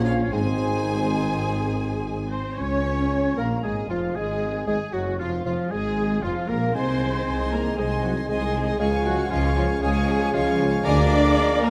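A clear, focused double bass section leads the low end of this urgent, restless orchestral excerpt, joined on the bass line by a mellow, distant tuba and an expressive cello section with vibrato. Above them, a lush violin section carries the rubato melody from the background, while a second violin section, an airy, bright flute section and a solo oboe with a smooth top weave second lines. A clarinet, distant and very quiet, adds another second line from 0.3 seconds. A viola section with expressive portamento and a mellow solo bassoon fill the accompaniment, and a French horn section and trombone section hold very quiet sustained chords from deep in the hall. The brief opening gives way to a new section at 2.6 seconds, and the whole passage sits in the moderate, roomy reverb of a scoring stage, with the fragment cut from a longer classical piece.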